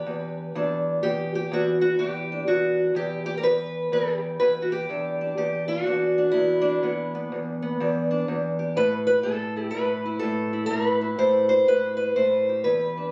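A swung 4/4 pulse at 124 BPM drives this short cut from a longer acoustic country blues piece in E minor, tuned slightly low with A4 at 436 Hz, carrying a soulful, mournful mood. A lone fingerpicked steel-string parlour guitar, dark and boxy and placed up front, ranges from E2 to D5, moving from Em7 to Am at 8.8 seconds. The phone-in-the-room capture has light reverb and compression.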